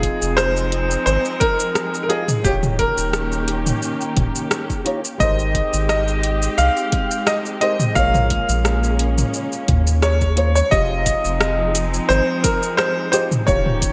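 A wistful sunset chillout groove in F minor at 87 BPM, with a light swing on the 16ths, opens with all six parts at once: a bright, brilliant concert grand piano carries the melody up front, while a dark, thumb-plucked flamenco guitar accompanies, both touched by digital delay. Beneath them, a veiled, con sordino string section holds lush, distant chords, a round, wave-folded analog bass sits up front, and a deep house kit of metallic hats, rim click, shaker and toms, bathed in gated reverb, joins a deep electronic kick, both drum parts overdriven. The 1980s-style digital production adds a moderate plate reverb as the harmony moves through Fm7, Eb7, Abmaj7 and Bbm7 before returning to Fm7 at 10.7 seconds, where a new section begins.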